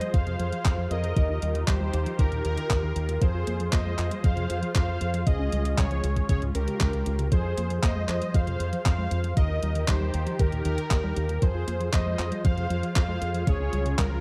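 Danceable and melodramatic, this short italo disco cut sets a bold, brassy analog synth lead with chorus and tape echo over veiled, muted studio strings, a warbling lo-fi pluck arpeggiating in the background, a fingered electric bass through an envelope filter, and an overdriven, sampler-style drum machine with handclaps, hi-hat and a thumpy kick, all in a dark production with a faint mains hum.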